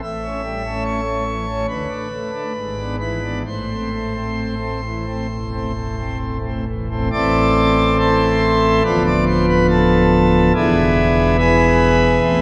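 Classical chorale-style music for solo pipe organ, this short excerpt cut from a longer piece carries a dark, solemn mood at an unhurried, rubato pace in 4/4. The principal chorus sounds full and up front with a romantic voicing, reaching from a deep D1 up to E5, while a church reverb with a 3.5-second decay hangs around every chord. The same phrase is heard twice, the second statement beginning at 7.1 seconds, moving through diminished and dominant-seventh colors and coming to rest on an unresolved E7.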